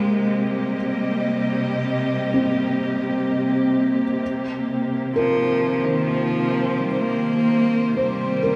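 A rich, smooth solo cello carries the melody with vibrato and tape echo over woody bowed studio strings holding sustained chords, while a soft felt-muted upright piano with audible action noise plays echoed arpeggios in the background and a barely audible, evolving analog drone hums beneath, the whole set in a vast, echoing cathedral reverb for a reflective, melancholic ambient excerpt in C minor at 64 BPM.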